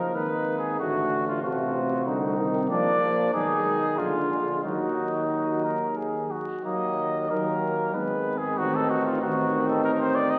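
Classical brass quintet music in Eb minor, solemn and grave, moving at 92 BPM in 3/4 with an uneven, halting pulse, heard as a short cut from a longer piece. The trumpet carries the melody up front, close-miked and mellow with light vibrato and a soft attack. Behind it the flugelhorn sings a second line in a vintage, rounded tone with light vibrato, while a clear, distant French horn and a close, clear trombone fill in the accompaniment. A roomy, distant tuba anchors the bass. The harmony moves through Abm, Adim7, Bb and Bb7 before settling on Ebm at 4.6 seconds, and a second section begins at 6.6 seconds, returning to Abm and Adim. A wet scoring-stage reverb surrounds the ensemble, and the whole is heard through the crackle of a very old 78 rpm record.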